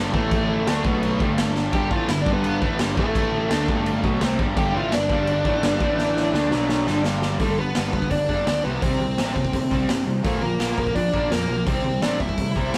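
Punk rock at 169 BPM in G mixolydian, this rowdy, energetic stretch is cut from a longer piece and sounds like a rough rehearsal-room take with light reverb and warm saturation. A cranked stack guitar and a raw garage guitar, both bright, overdriven and double-tracked, open together on the riff, with the garage guitar tucked in the background until it drops out at 7.4 seconds, where the second section begins. Underneath, a fuzz picked electric bass, played direct and amped, adds a growly low end. A dark, distorted lead guitar sits up front carrying a bluesy melody. The up-front acoustic drum kit, with a punchy kick, medium-tuned snare, hi-hat and crash in a pumping stone room, sounds gritty with a rolled-off top and throws in fills at 1.6 seconds and again leading into the second section, where the chords move from C5 through Bb to C.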